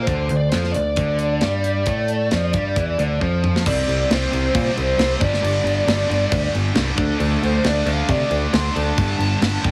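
A heavily compressed, radio-ready sound with light reverb frames this aggressive, menacing hard rock excerpt in D minor at 135 BPM, where a bright, double-tracked cranked stack guitar riff and a growly, punchy picked electric bass drive alongside a tight metal drum kit with a rolled-off top, whose fill at 3.2 seconds launches a dark, distorted bluesy lead guitar solo with slapback echo from 3.7 seconds, moving over C5, G5 and D5 chords.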